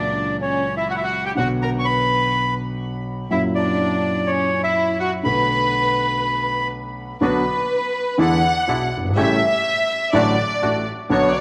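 A rubato 4/4 tango pulse at 123 BPM drives this tense, sultry fragment in B harmonic minor, where a reedy, up-front bandoneon with tape echo carries the high melody until 6.7 s over a clear, biting violin section with light vibrato and a concert grand piano of deep bass and long sustain, before the harmony settles into B minor at 7.2 s, the intense bowed strings take the solo, and a second, brighter bandoneon adds stabs, all within a wet echo-chamber reverb.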